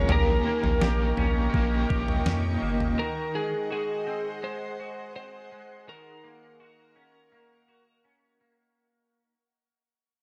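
A crisp 8-bit drum machine with a thumpy kick, fat overdriven snare and toms sets a straight 83 BPM 4/4 pulse until 3.0 seconds beside a round, deep, up-front analog bass that stops at 2.9 seconds, in this melancholic, haunting dream pop fragment cut from a longer piece, where a picked overdriven electric guitar with tremolo and subtle chorus drops out at 3.5 seconds while a dark, slightly broken-up slide guitar carries the melody through tape echo and plate reverb, a bright, clean semi-hollow guitar picks chorused, echoing arpeggios, and a shimmering, ethereal, warbling pad holds detuned sustained chords over a dark production with moderate room reverb that fades out across its whole length.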